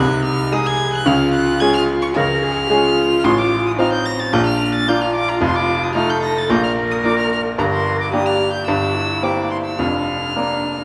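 Quick classical-period piano trio excerpt at 110 BPM in 4/4, urgent and stormy, where an up-front, brilliant grand piano with short sustain carries the accompaniment beneath a pure, floating sul tasto violin melody high in its range and a dark, intimate cello second line played sul tasto with vibrato, the music settling into Bb major from 3.2 s, all heard in a reverberant recital hall.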